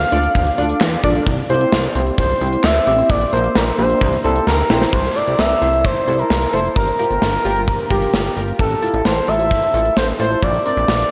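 A smooth sawtooth synth lead with vibrato, chorus and analog delay carries the melody of this bright, nostalgic synth-pop excerpt at 131 BPM in C mixolydian, sitting up front over a gated 80s drum kit with tight kick, snare, handclaps, hi-hat and crash, a glossy pulse-width synth bass with evolving filter sweeps, and round, chorused analog keys. A drum fill at 4.5 seconds carries the Dm–C–Bb opening into a second passage moving through C6, Gm7, Fmaj7/A and Bbadd9. The whole mix is soaked in a dreamy cathedral reverb with a 5.6-second tail.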